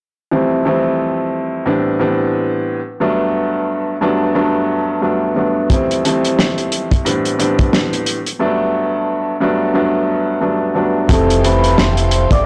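Swung 16ths at 89 BPM carry this confident, nostalgic boom-bap hip-hop excerpt, where a dark, mellow vintage baby grand piano cycles through Fmaj9, Am11 and Gmaj9 from 0.3 s, a dry, muffled lo-fi soul kit with a tight kick and medium-tuned snare joins up front at 5.7 s, and at 11.1 s a round, punchy fingered dub bass, a metallic, ringing vibraphone melody with soft mallets and slow motor vibrato, and smooth bowed strings in the background arrive, all within a small room and a blown-out, overdriven recording.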